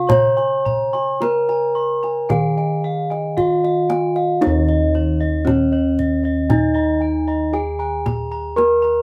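A moderate studio room gives this live ensemble performance a short, natural ambience, with the players sounding gathered together in one space. Cut from a longer Javanese gamelan piece in slendro tuning, the passage feels serene and shimmering, moving at a slow, unhurried pace in four. Up front, a bronze metallophone struck with a wooden mallet carries the melody with a ringing tone, while a second metallophone, played with a horn mallet and sitting slightly behind it, adds higher arpeggios with a bright edge. A set of bossed gongs also plays arpeggios in the upper register, round and beating in character. Beneath them, another set of bossed gongs holds the bass with padded beaters, heard close-miked, dry, mellow and full. The kendang joins at 0.1 s with a tight, acoustic sound and soft hands, and the music passes into a new section at 4.4 s before the excerpt stops at 9.0 s.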